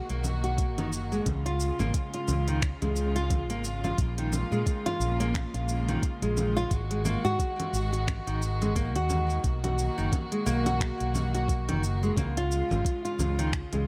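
A swung 88 BPM groove in 4/4 sets a meditative, earthy organic downtempo mood, built on a soft, tape-warm electronic kick that enters at 0.6 seconds and a crisp-hatted, small-room electronic kit of congas, finger snaps, hi-hat and shaker. Up front, a round, dark fretless electric bass carries sidechain pumping, while a fingerpicked classical nylon-string guitar plays arpeggios through digital delay over chords moving from Bmaj7 through C#, A#m7 and G#5. Behind them, a rich, distant chamber string section holds biting sustained chords with light vibrato and its own pumping, all set in light reverb and digital ambience, in a passage cut from a longer piece.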